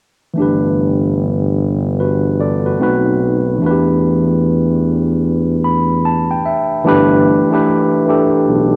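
An overdriven tine electric piano, barky and gritty through a combo amp with a cassette-tape tint, sits up front in this short, relaxed R&B excerpt with a lazy sixteenth-note swing. A mellow tuba carries the bass line with a light vibrato and a jazz touch, while the piano moves through G6, B7b9 and Em7 chords and adds a fill from 5.2 to 6.9 seconds before the harmony settles back on G6. The home cassette recording is bathed in a short, wet studio reverb.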